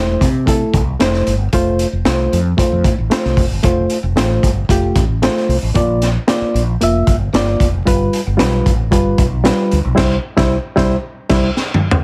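Heavily compressed into a radio-like sound with a light reverb, this short cut from a longer piece is uptempo 1960s-style soul at 114 BPM in a straight 4/4, driving and passionate. A reedy, worn electric piano sits up front as accompaniment, slightly out of tune and heard clean through its built-in speakers. Beneath it, a mellow fretless electric bass carries a round, direct tone wrapped in lush chorus. The crunchy breakbeat drum kit, recorded in a small room, brings a punchy kick, a high-tuned snare, dark cymbals, toms and hi-hat, all with a saturated, gritty edge and a rolled-off top. The chords move from Am through F and Bb to G7, arriving on C at 10.0 s as the band hits an accent, and the piano and drums each add a brief fill before the cut at 12.0 s.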